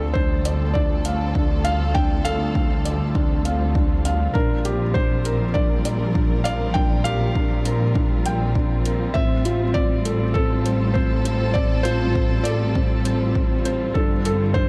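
Intimate and cinematic, this piano-and-strings electronica cut from a longer piece sets two felt-muted upright pianos over a dark production, one carrying the melody and the other a riff, both mellow with audible action noise and touched with delay. A lush, bowed string section holds sustained chords while a focused, clear double bass section supplies the bass line, both breathing with sidechain pumping over a Dm, Bb6, F6/A and Gsus2 progression. A punchy, overdriven electronic kick drum arrives at 0.2 s and metallic electronic hi-hats at 0.5 s, both set in small room ambience.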